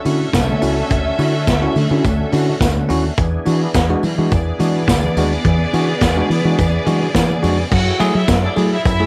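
A lightly reverberant cassette home recording carries this glamorous, sultry disco excerpt at 106 BPM in a straight 4/4, moving from Dmaj7 to E7 and settling on F#m9 at 7.7 seconds. A punchy, up-front vintage drum kit with dark cymbals and a round, foam-muted fingered electric bass anchor the groove, while a bright, bell-like tine electric piano plays the accompaniment and a lush, bowed string section with vibrato and a smooth top carries a second line. Behind them, a gritty, overdriven tonewheel organ holds sustained chords through chorus vibrato and a slow rotary speaker, and very quiet high-tuned congas and a jingly, dry tambourine add background percussion, the congas dropping out at 8.4 seconds.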